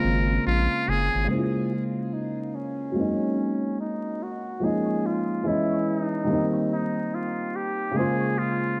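A metal-muted trumpet carries a buzzy, breathy, jazz-style melody through this reflective, melancholic hip hop excerpt at 72 BPM in Bb minor, with swung 16ths. A felt-muted upright piano plays mellow, boxy chords with audible action noise, moving from Bbm9 through Db69 and Cm7 back to Bbm9, while a deep, wave-folded analog bass sounds only until 1.3 seconds, when a filter sweep begins and runs to 8.8 seconds. Wet spring reverb, worn cassette tape warble, pitch drift and vinyl crackle colour the mix.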